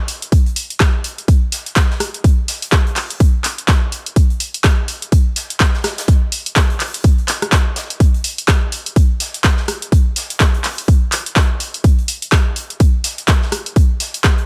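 This energetic yet bittersweet house excerpt runs at 125 BPM in 4/4, with a swung sixteenth-note feel, and opens at 0.1 s with two drum parts sounding together. Up front, a punchy analog drum machine supplies handclaps, hi-hat and rim click with a tape-warm character, as if re-recorded in a small room. Behind it, a big acoustic rock kit contributes hi-hat and a medium-tuned snare, its natural, roomy sound pushed into the background and thinned by high-pass filtering on the hats, snare and room. An electronic kick drum arrives at 0.3 s, layered, produced and punchy, sitting prominently at the front of the mix. With little reverb overall, the groove stays dry and close, forming a single section that carries on to 14.5 s.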